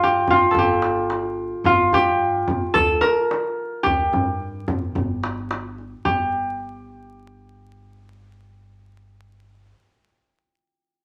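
A ringing, fingerpicked concert harp carries the soulful, longing melody up front in this Turkish makam ensemble piece in G makam ussak at 109 BPM, over a woody, thumpy pizzicato upright bass and a deep, saturated clay darbuka that drops out at 6.3 seconds, all set in a large studio reverb with a vinyl crackle in this short cut from a longer piece.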